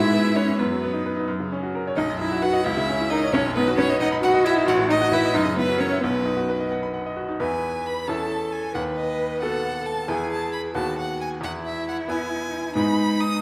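This quick classical-period movement for piano trio moves at 89 dotted-quarter beats per minute in a straight 6/8, graceful and lively in mood, and is cut from a longer piece. A single bowed violin carries the melody from B4 up to D#6 with a clear, focused tone and vibrato, heard close, while one cello plays a rich, smooth and even second line between B3 and B4. The baby grand piano provides the accompaniment, bright and brilliant with short sustain, sitting up front across a span from A1 to B5. The opening stays in B major, moving through chords like F#7 and B7/A, before the music shifts to E major at 7.4 s, where the harmony settles on E, A/E and B7/D# and closes on G#m at 12.8 s. All three players sound throughout, set in the wet reverb of a recital hall.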